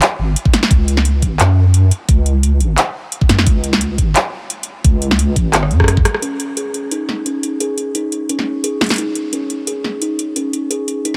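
A tape-warmed drum and bass kit with a cracking snare, metallic hats, rim click and handclaps opens this heavy, spacious half-time drum and bass cut at 174 BPM with a light swing, joined almost at once by a deep, dark, detuned wobble bass thickened with chorus and a layered, knocking electronic kick, both of which stop at 6.0 seconds during a drum fill. A woody, hollow kalimba then enters over the continuing kit from 6.2 seconds with ringing arpeggios roughened by 12-bit sampler grit, delay and a filter sweep, set in light digital reverb.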